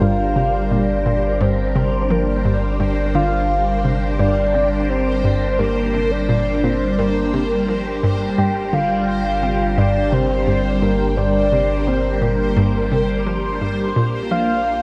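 Mysterious and expansive, this ambient, sequencer-driven space music excerpt pairs a soft, full-bodied octave-layered synth lead, coloured by chorus, phaser, cassette tape and tape echo, with a swirling, up-front phased string machine holding sustained chords, a round, detuned analog pluck riff with tape echo, a deep sine sub bass, and a faint bubbling stepped-filter texture with resonant random filter steps, all set in a dark production with moderate plate reverb as the harmony moves from Gm7 to Bb at 14.0 seconds.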